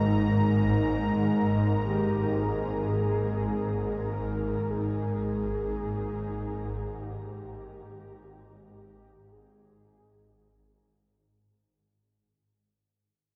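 In free time, this ominous, unsettling dark ambient drone, cut from a longer piece, sits on a G#sus2 chord, with a swarming, detuned low drone and a deep, moody analog pad with chorus and shimmer reverb both up front. From 1.8 s a mellow, horn-like synth lead with vibrato, chorus and a diffuse ambient delay carries a round, vintage melody. The production is dark and drenched in huge reverb, with a fade-out running through the whole 11.6 seconds.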